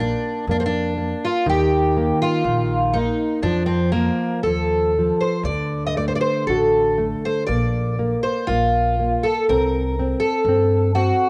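A lightly reverberant home cassette recording with a touch of studio ambience frames this passionate, longing fado-style ballad fragment, moving rubato at 60 BPM in 2/4, where an up-front, shimmering, octave-doubled fingerpicked twelve-string acoustic guitar with a cassette tape tint carries the melody over a dark, full-bodied, thumb-plucked nylon-string guitar, also tape-tinged, while a woody pizzicato upright bass on steel strings holds the low end until 11.1 seconds.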